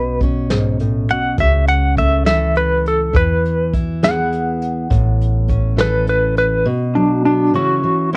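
Acoustic folk in a slow, straight 6/8 at 68 BPM, this reflective and haunting fragment of a longer piece features a clean, compressed semi-hollow electric guitar with tremolo carrying an up-front solo melody over a fingerpicked dreadnought steel-string acoustic guitar with cassette-tape character, a woody, growly pizzicato upright bass, and a dark, smooth brush drum kit with a punchy kick and the same tape coloring, entering at 0.2 s; bass and drums drop out near 6.6 s, leaving the two guitars to close the short final passage by 8.2 s in an intimate, dry home cassette recording.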